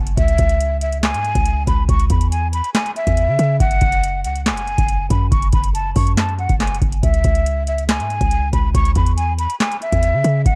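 Trap hip hop excerpt with an eerie, hard-hitting half-time feel, where a breathy, tongued silver concert flute, close-miked and softened by a low-pass filter and tape echo, hovers over a deep, boomy sine 808 bass and an overdriven analog drum machine with a booming kick, tonal snare, handclaps and metallic hi-hats, the whole mix steeped in worn, warbling cassette-tape pitch drift.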